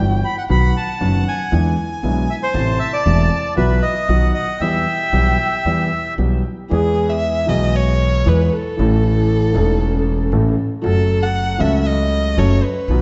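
Rubato in 4/4, this dramatic, sultry tango fragment sets a reedy, up-front bandoneon melody against a bowed violin second line, a deep-bassed concert grand accompaniment and woody pizzicato upright bass, then the bandoneon drops out at 6.1 s and the expressive violin, rich with vibrato and portamento, takes a close solo from 6.7 s as the harmony brightens to major, while a mellow soft-mallet vibraphone rings briefly in the background from 9.0 s, all within a dark, warm mix under moderate scoring-stage reverb.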